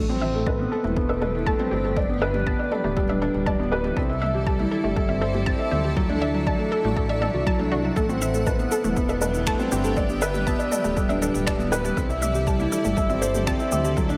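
Intimate and moving, this excerpt of piano and strings electronica at 120 BPM sets an up-front, felt-muted upright piano riff with audible action noise and tape echo over a deep, rumbling detuned saw bass with sidechain pumping, a round analog pluck arpeggiating in the background through chorus and tape echo, a cloudy granular pad holding sustained chords from 0.9 seconds, and a punchy electronic kick with a deep house kit of finger snaps, shaker and toms, all moving through Amadd9, G, C and D in light digital ambience.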